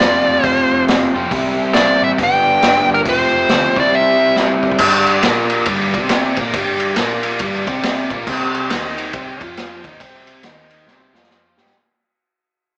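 A nasal lead guitar with a parked wah opens on the melody over a biting, double-tracked overdriven guitar riff, vintage drums with a punchy kick and dark cymbals, a round, foam-muted bass in the background and a very quiet, gritty tonewheel organ turning on a slow rotary speaker, giving this swaggering, driving blues rock and southern rock power-trio excerpt a swung 138 BPM groove with a live-in-one-room, small-speaker sound, as drum fills arrive at 4.4 and 10.9 seconds and the band fades out from 4.8 seconds.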